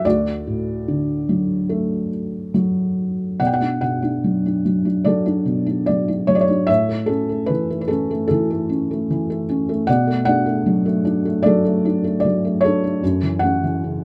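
The recording is dry and close, with detailed microphones placing a felt-muted upright piano up front so that the soft clatter of its action is plainly audible. This short passage, cut from a longer classical piece, is a lyrical solo for the piano in 4/4, played with a gently rubato feel. Thick felt gives the instrument a dark, intimate tone with short sustain, and its range stretches from D2 up to G5. It opens on a D chord, then from 3.4 s moves through Bm7, Aadd9 and back to Bm7 before arriving on F#m7 at 13.0 s. The mood is warm and peaceful, like a private moment of reflection.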